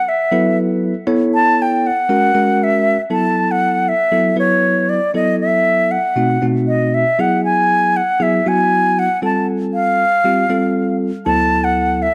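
A pure, vibrato-laden concert flute opens this nocturnal, slick jazz excerpt at 118 BPM in 4/4. It carries the melody up front with a soft attack and takes the spotlight through the first 3.1 seconds, while a bell-like, bright tine electric piano joins at 0.3 seconds with clean, direct accompaniment. Both parts sit in plate reverb within a moderate club ambience as the harmony moves from F#m7 through B7b9 and Eadd9 to G9sus4 and Dadd9.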